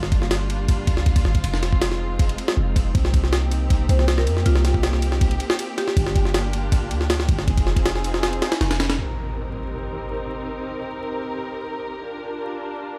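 Drum and bass in a jungle vein, this atmospheric yet frenetic passage from a longer piece runs at 159 BPM in C minor, with a lush, bowed string section holding dark, vibrato-rich chords through Gm7, Fm7 and Cm7. Alongside them sit a gritty, pitched-up sampler drum kit, with a thumpy kick and a high-tuned snare in studio reverb, and a deep, boomy 808-style bass with tube saturation, both up front. A background marimba played with medium mallets on rosewood bars adds a brief melody from 3.9 s, roughened by 12-bit sampler grit and dub echo; at 9.0 s the drums and bass stop, leaving the strings alongside an electronic impact, all coated in vinyl crackle in a largely dry mix.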